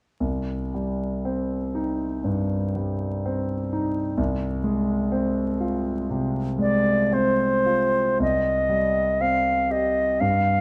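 Close, detailed microphones, a moderate stage reverb and vinyl crackle frame this elegiac, solemn romantic classical passage, cut from a longer piece, in C minor at a rubato 53-66 BPM in 4/4, where an up-front concert grand piano with a clear, natural tone, deep bass and long sustain accompanies from 0.2 seconds over Cm and Fm/C before a pure, straight-toned, tongued concert flute enters with the melody at 6.6 seconds, carrying on as the harmony returns to Cm at 8.2 seconds.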